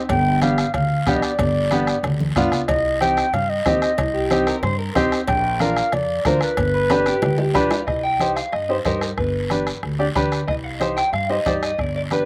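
Cumbia at 185 BPM, danceable and fiery, in which a mellow, soft-attack clarinet carries the melody up front until 7.5 s over growly pizzicato upright bass, a close bombo, low-tuned congas in the background, ringing cowbell and timbales, a raspy guiro and a bright, brilliant upright piano with short sustain, while a dark, slightly broken-up electric guitar joins at 4.1 s and takes a clean solo from 7.9 s as the harmony settles into C harmonic minor, with a dry outdoor sound and slapback echo on the clarinet, cowbell and timbales, piano and guitar.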